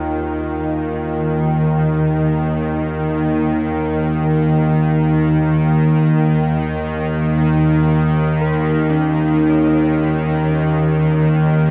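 A bowed-like drone sits up front for the whole 11.7 seconds, a tense, string-like sawtooth and triangle tone built from detuned unison layers with a noise layer, ring modulation and vibrato, swelling in on a slow attack and sustaining between Eb2 and Eb3 with a long release and its own built-in reverb. Far behind it, a very quiet, dark detuned synth bell traces arpeggios from Db4 to Db5, its eerie, inharmonic FM strikes starting fast and decaying into long tails colored by chorus and phaser. This is dark ambient drone in free time, tuned to A4 = 439 Hz, and its mood is desolate and cavernous. A huge ambient reverb with a 7.9-second decay soaks the mix, leaving it dreamy and wet. The recording is cut from a longer piece and holds a single sustained chord throughout.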